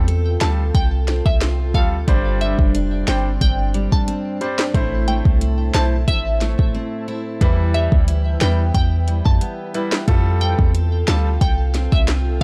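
Piano, acoustic guitar and 808-style bass open together at the very start of this dancehall excerpt, a tough, bouncy groove at 90 BPM in a straight 4/4. The clear grand piano plays intimate accompaniment with its action noise audible, while the picked steel-string guitar spins arpeggios with a touch of finger squeak. Up front, the deep, boomy bass and an electronic afro-pop kit with a sharp snare, metallic hats and handclaps drive the track, and a mellow FM pad sits in the background, its ethereal chords pumping under sidechain with ensemble chorus and built-in reverb. From 0.4 seconds a crystalline wavetable pluck carries the melody, bright and digital, colored by chorus and digital delay. A short break at 6.7 seconds interrupts the flow before the harmony moves on through Em and back to Fadd9, all within a dark, ambient production.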